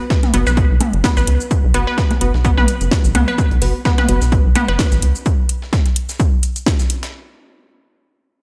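Hypnotic and sparse, this minimal techno excerpt at 128 BPM sits on a drop with a punchy, overdriven kick up front, layered with a house kit of cracking snare, metallic hats and shaker, a gritty, high-tuned breakbeat sampler kit in the background, and overdriven electronic toms and percussion blips touched with tape echo. A dark, rubbery square bass with tube saturation and sidechain pumping bounces up front, while a squelchy resonant blip pluck with chorus and analog delay carries the riff and crisp, detuned wavetable chord stabs with cassette grit sit further back. The melodic parts and the toms drop out between 4.2 and 5.1 seconds, leaving the drums to run on to the end at 7.1 seconds in a light digital ambience.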